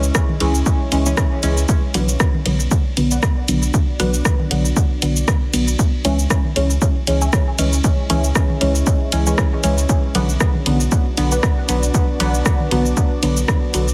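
Hypnotic and cavernous, this dub techno excerpt moves at 117 BPM in 4/4 with a light swing on the sixteenths, centred in B dorian and drifting between C#m and Bm chords. An up-front, punchy electronic kick drives it from 0.1 seconds, alongside a tape-warm analog drum machine of hi-hat, ride cymbal, rim click and shaker that sounds re-recorded in a small room, plus very quiet electronic toms. A soft, round dub sub bass with tube saturation sits low beneath a deep, moody ambient pad of slow-attack sustained chords, dark and set in the background with chorus and built-in reverb. A mellow, evolving chord stab with a filter sweep enters at 0.4 seconds carrying chorus, phaser and dub echo, while a muted, detuned filtered stab riff plucks higher in the background from 1.9 seconds with phaser, analog chorus and its own dub echo. Sidechain pumping breathes through the pad, bass and both stabs, and the whole mix has a heavily compressed, radio-like sound with light reverb.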